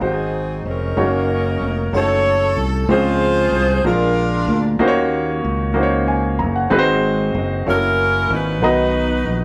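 A clear, close-miked saxophone section carries the melody in a jazz style with vibrato, sounding from the start until 4.8 seconds and returning at 7.7 seconds in this hopeful, reverent slow gospel piece in a straight 6/8. Beneath it, a warm, natural baby grand piano plays accompaniment throughout, while a fingered electric bass adds a dark, round, punchy foundation up front. The band plays live together in a large studio with a moderate reverb, over rich seventh and sixth chords, and the recording is cut from a longer piece.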